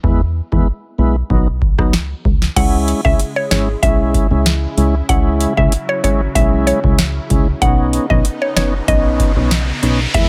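A dry, up-front mix carries this bouncy, hypnotic dancehall excerpt in C# minor at 95 BPM, where a booming, overdriven analog drum machine with deep kick, crisp snare, metallic hats, rim clicks and crash drives a punchy, funky analog bass and a smooth tonewheel organ with chorus vibrato over E, B and C#m chords, joined at 2.6 seconds by a woody, round FM mallet pluck melody, at 3.0 seconds by a lush, detuned unison pad pumping in the background with phaser, and at 8.3 seconds by an electronic riser.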